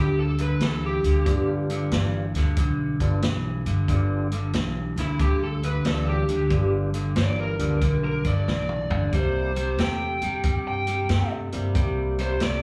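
Gritty and soulful, this electric blues shuffle, cut from a longer live set, has a dark, overdriven lead guitar with slapback echo soloing up front over a slightly broken-up rhythm guitar riff with spring reverb and a woody pizzicato upright bass. A vintage drum kit with a punchy kick and rolled-off top enters at 0.4 seconds, and a lightly overdriven tonewheel organ with slow rotary speaker and slapback echo joins quietly at 1.3 seconds. The drums play a fill leading into the move from G7 to C7 at 9.1 seconds, and the band comes through the venue's PA with club reverb and small room ambience.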